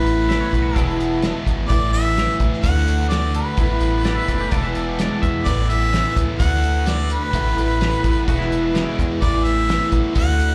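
Heard through a club PA with light room reverb, this warm, nostalgic folk rock and heartland rock excerpt moves at 128 BPM in a straight 4/4, cycling through Asus2, E and D6. A clear, close-miked harmonica carries the melody with light vibrato and scooped notes, bathed in plate reverb, slapback and tape echo, over a dark, woody, boxy picked acoustic guitar with old strings and a double-tracked overdriven electric guitar riff. A metallic FM bass with a fast, decaying attack and a cloth-damped, thuddy kit with a fat snare and tight kick hold the bottom, while a bright, twangy clean electric guitar with phaser sits in the background from 0.3 to 9.1 seconds.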